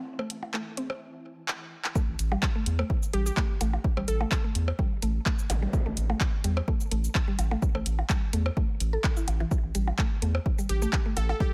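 Minimal techno at 127 BPM with a light swing, hypnotic and sparse, where a faint airy pad and a swarming drone drop out after the opening second, leaving a woody mallet-like pluck riff with tape echo, a thick saturated sub bass, electronic percussion blips and an overdriven analog drum machine of handclaps, hi-hat and shaker under filter sweeps and a drum fill until a punchy kick drops in at 2.0 seconds, while a glassy, crystalline wavetable pluck melody surfaces at 3.1 seconds and again near the end, with a brief electronic zap at 5.5 seconds and sidechain pumping on the pad, drone, mallet pluck and sub bass in this fairly dry mix.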